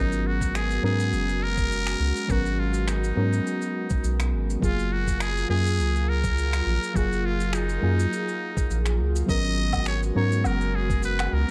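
A muted trumpet with a buzzy, raspy, jazz-style tone and scooped, growling notes carries the melody through tape echo from the opening, alongside a warbling vintage FM electric piano with chorus and cassette-tape colour, an airy, breathy pad holding chords, and a round, deep analog bass up front, while distant shaker, finger snaps and woodblock with brushes join at 0.1 s and a gritty, thumpy kick at 0.4 s, giving this warm, relaxed sunset chillout excerpt in G# dorian at 103 BPM a lightly swung 16th feel and dark production as the harmony moves from G#m11 to F#maj9 and back.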